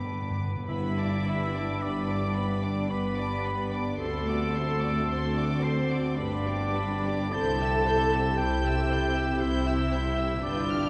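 A brief fill on round, soft-malleted timpani opens this tender, lyrical slow romantic orchestral excerpt in G major, in 3/4 at a rubato 42-59 BPM, where a floating, sul tasto violin section carries the high melody over a second violin line, an intimate viola section, close cello and dark double bass sections, and a clear, distant solo oboe, with mellow French horns adding sustained chords from 0.7 s, the whole set in a long cathedral reverb as the harmony moves through G, D7, back to G and on to C.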